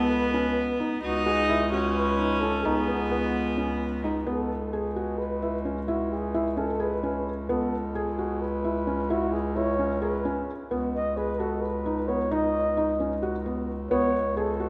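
A restless, pensive contemporary chamber piece in 7/8 and C# minor at 261 BPM in eighths, opening with a dark, breathy flugelhorn melody with scooped notes over soft arpeggios from a felt-muted upright piano with audible action noise and a distant bass clarinet anchoring the bass on C#2, while a rich, floating bowed viola adds a second line only until 4.3 seconds, all bathed in a church's wet, lingering reverb.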